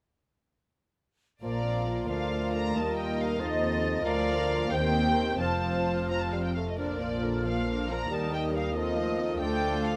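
A soft-edged, floating violin section carries the melody of this spirited, cheerful classical-period orchestral movement in 6/8 with a rubato feel, while airy flutes, a darker sul tasto second violin section and a warm solo clarinet add background lines, dusky violas, a mellow bassoon and distant, roomy French horns supply accompaniment and sustained chords, and rich double basses with pure-toned cellos anchor the bass, every part sounding from 1.4 s under light reverb and close, detailed microphones.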